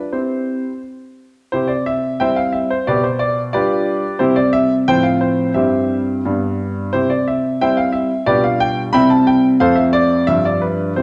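A clear concert grand piano plays alone from the start, with a natural tone, deep bass and an up-front presence, in this graceful, elegant classical-period sonatina fragment in C major, tuned to A4 = 439 Hz. Moving at 89 BPM in 2/4 with a rubato feel, it opens with a brief phrase before a new section begins at 1.5 seconds, where the harmony moves through C, G7/B, F/A and C/G and settles on G7 at 10.3 seconds. A wet recital-hall reverb with a 1.4-second decay surrounds the piano in a dark production.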